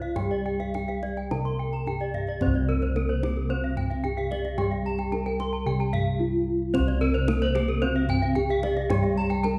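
Round, beating bronze bossed gongs struck with padded beaters sit up front in this ceremonial, brilliant Balinese gamelan excerpt in C slendro at 111 BPM in 4/4. They carry the low line beneath a mellow metallophone melody played with padded disc mallets, whose paired tuning gives a shimmering beat. Two airy metallophone parts, played with horn mallets, add bright high arpeggios, one entering at 0.2 s. A close-miked, full metallophone accompaniment and a deep, dry kendang in the background complete the ensemble, all set in the lush reverb of a recital hall, with the music moving into a new section at 2.4 s.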